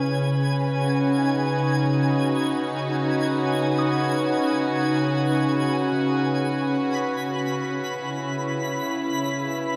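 A warm chamber string section sits up front, holding sustained chords with a gut-string, reedy tone and light vibrato, a filter sweep shaping its sound through the first 6.4 seconds. This ambient excerpt in C# minor drifts in free time with a serene, reflective mood, tuned slightly low to A4 = 439 Hz. Beneath the strings, a very quiet bowed-like drone holds a low C#3 with a detuned, sawtooth edge and a tense, string-like quality. High above, a twinkling granular texture adds a sparkling, octave-up shimmer through its own reverb, while a soft synth bell plays pure, mellow arpeggios until about 6.9 seconds. The harmony moves from B over C# to C#m7 at 6.4 seconds, all set in a vast, echoing cathedral space with a long reverb tail.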